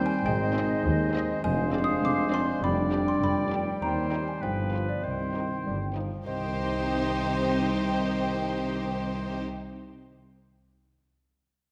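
A woody, dark xylophone played with rubber mallets carries the melody alongside a focused, bowed violin section in this playful, whimsical C minor film cue at 100 BPM in 2/4, cut from a longer piece. Around them, a clear oboe, an airy flute ensemble, a distant, mellow clarinet and a second violin line weave supporting parts, while lush violas, a soft-attacked bassoon and a very quiet horn section fill the middle, and bright double basses, tuba and expressive cellos anchor the low end. The whole mischievous ensemble sits in a wet concert hall reverb, with the xylophone ringing on alone briefly after the others stop at 9.4 seconds.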